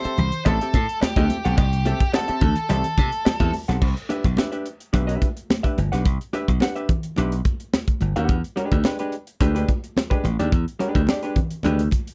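A straight 4/4 funk groove at 107 BPM drives this cool, sly excerpt, cut from a longer piece. An acoustic drum kit with a high-tuned snare, compact kick, hi-hat and crash sits up front beside a punchy, brilliant slap bass. Further back, thin-skinned, high-tuned congas and a metallic cowbell add percussion color, and the cowbell drops out at 3.4 s. An electric octave-fuzz lead guitar carries a short, dark, distorted melody over Am7 and C6 before stopping at 3.5 s. A vintage hollow-body jazz guitar plays shadowy, clean, compressed, picked accompaniment throughout, moving to a rootless Cmaj9 and then, at 8.3 s, a rootless E7#9. The close, dry studio sound carries a 1970s character.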